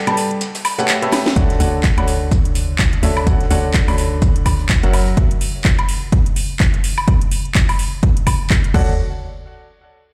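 A swung 4/4 groove at 126 BPM drives this uplifting, feel-good piano house clip in D major, cut from a longer piece. It opens with a brief break where a clear, woody upright piano riff with audible action noise, sidechain pumping and tape echo sits over an A9 chord, joined at 0.1 seconds by an overdriven house kit of cracking snare, metallic hats, handclaps, crash, woodblock, and a very quiet, gritty, low-tuned acoustic kit of fat snare, shaker and hi-hat. A drum fill at 1.1 seconds leads into the main section at 1.4 seconds, where a punchy, overdriven electronic kick lands up front and a hollow, dark, organ-like FM bass with tube saturation and sidechain pumping settles on Dmaj7. The piano drops out after about 5.1 seconds and the low-tuned kit and bass stop with it, leaving the house kit and kick to carry on until piano and bass return briefly on Dmaj7 near 8.7 seconds. The whole mix sounds as if played through a big sound system in a bare room, with large studio reverb and small room ambience giving the drums a roomy, re-recorded character.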